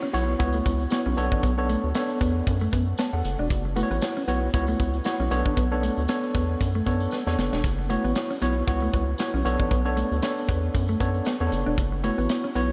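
A lightly swung sixteenth-note groove at a danceable late-night pace drives this early-eighties boogie funk snippet, where a worn, slightly out-of-tune tine electric piano with gentle overdrive comps up front over a rubbery, hollow square bass, a tight funk drum kit with a high-tuned snare that breaks into a fill at 7.1 seconds, a dark, chorus-lush electric guitar riff in the background and a faint jingly tambourine, all swimming in a dreamy cathedral reverb as the harmony rocks between F#7sus4 and Bm9.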